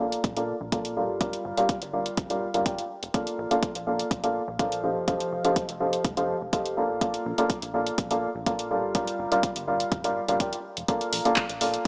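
Piano house with a euphoric, feel-good lift, this short cut from a longer piece rides a straight groove through a single section of lush Bbmaj7, Gm7 and F9 chords. A clear upright piano carries the riff up front, its woody, vintage tone given a short sustain and shaped by sidechain pumping, a low-pass filter and analog delay. Beneath it, a plucky analog bass sits in the background with a dark, funky sawtooth and pulse-wave bite, a fast attack and a moving notch, pumping along with the sidechain. A punchy electronic kick, layered and tape-tinged, sits up front with the air of a large room, while an analog drum machine supplies handclaps and hi-hat recorded in a small room. Light reverb wraps a dry, gritty hardware sound that carries a small-speaker character.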